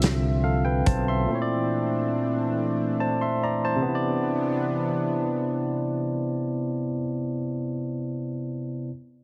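In a slow, straight six-eight sway, this intimate, sensual R&B fragment opens with a dry soul drum kit with a fat snare and a round, dark fretless electric bass, both gone by 1.3 seconds, leaving a bright, barky tine electric piano up front over a shimmering, detuned pulse-width pad with chorus as the harmony moves through Dm9, Bbmaj9#11 and Cmaj9. The pad drops out at 6.8 seconds and the piano carries on alone, all under light reverb and a heavily compressed, radio-like sound.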